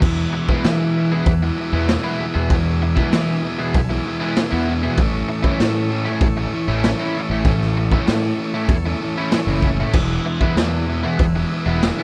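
A carefree, upbeat slice of indie rock, cut from a longer piece, opens with the full band at once: a raw garage drum kit with a boomy kick and a gritty, pumping small-room sound sits up front alongside an overdriven semi-hollow guitar riff, joined by a round, punchy fuzz bass. A second, biting overdriven guitar adds its own riff coloured by analog chorus, while a buzzy vintage combo organ holds clean sustained chords with heavy vibrato in the background. The harmony moves from Eadd9 to A at 5.0 seconds and returns to Eadd9 at 10.0 seconds, and the mix carries little reverb, giving a dry feel.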